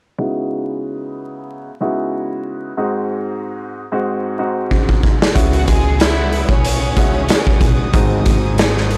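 A dark, mellow baby grand piano opens this boom-bap hip-hop excerpt at 0.2 seconds, sitting up front with long sustain as a filter sweep passes over its chords in C# minor, moving between C#m11 and G#7. The tempo is 93 BPM in 4/4 with a light swing on the sixteenths, and the mood is tough yet reflective. A raw garage drum kit breaks in with a fill at 4.7 seconds, its punchy kick, medium-tuned snare and hi-hat sounding gritty and saturated, with a rolled-off top and a pumping stone-room character. A pure, floating string section played sul tasto enters in the background at 5.3 seconds, and from 5.4 seconds a woody pizzicato upright bass on steel strings anchors the low end with transformer saturation. A lush, expressive violin section carries the melody with vibrato and tape echo, sounding distant and soft in attack. The mix is dry, with vinyl crackle on the recording.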